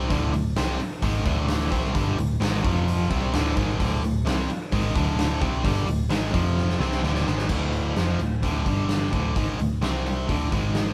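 Hard rock at 130 BPM in a straight 4/4, this anthemic, energetic excerpt from a longer piece has a bright overdriven electric guitar up front and a hollow-body overdriven semi-hollow guitar with tremolo in the background, both playing a riff built on D5 power chords that moves through F5, G5 and C5. A round, dark hollow-body short-scale picked bass holds the low end while a big acoustic rock kit with a fat snare, punchy kick, crash and hi-hat sits up front with a smooth, rolled-off top. The band plays live in one room with moderate studio reverb, and a drum fill from 6.6 to 7.5 seconds leads into a new section.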